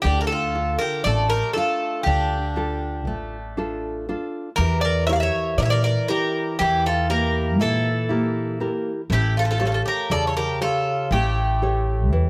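Reflective and melancholic, this Greek folk excerpt in 9/8 places a metallic, up-front bouzouki melody over a second bouzouki line with bright, partly octave-doubled strings, a fingerpicked nylon-string guitar with a deep classical tone, and a growly, woody pizzicato upright bass near the front, moving from Dm through Edim to A7 in light reverb.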